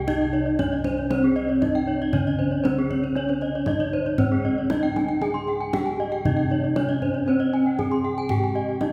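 A bronze metallophone struck with a wooden mallet carries the melody up front, its close, dry and full tone ringing between C4 and Ab4-20c, with paired tuning that gives it shimmering beats. This hypnotic, brilliant Balinese gamelan passage moves at 117 BPM in a straight 4/4 in C pelog and is cut from a longer piece. Two more metallophones, played with horn mallets, spin arpeggios above: the bright, softer top part reaches up to C6, while the middle part, also close and dry, sits between C5 and Ab5-20c. Bossed gongs supply a round, beating bass reaching down to C2. The kendang adds deep, acoustic percussion with a small-room character, and the ensemble as a whole sounds from further back in a wet recital hall with a 1.7 s reverb tail across the 8.9 seconds.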